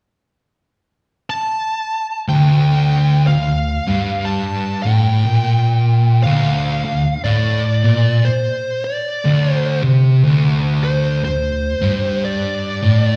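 A slow, swung pulse in four sets the pace for this brooding, hypnotic metal fragment, cut from a longer piece and heard as a live gig through a club PA with a modest room ambience and hall-like reverb. A fuzz lead guitar opens alone at 1.3 seconds, its dark, distorted tone carrying a high melody and sitting lower in the mix than the rhythm parts. At 2.3 seconds two fuzz guitars enter together on a low riff over a D5 power chord, and all three play on to the end at 13.2 seconds. The thick fuzz guitar is the thickest and most up front, while its partner has a warmer, compressed edge. Each guitar carries a slapback echo, which adds to the trance-like weight of the sound.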